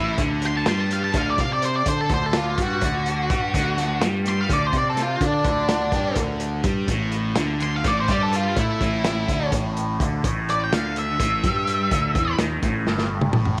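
An octave-fuzz lead guitar, picked and distorted with slapback echo, solos over a dark, double-tracked overdriven guitar riff with phaser and a punchy fingered fuzz bass, opening this trippy, kaleidoscopic psychedelic rock excerpt in 7/8. A crunchy breakbeat kit of hi-hat, kick, snare and toms enters at 0.2 seconds, gritty and up front with a tight kick and rolled-off top, all in light small-room reverb. The lead guitar drops out at 12.4 seconds, and a drum fill carries the final stretch from 12.9 seconds.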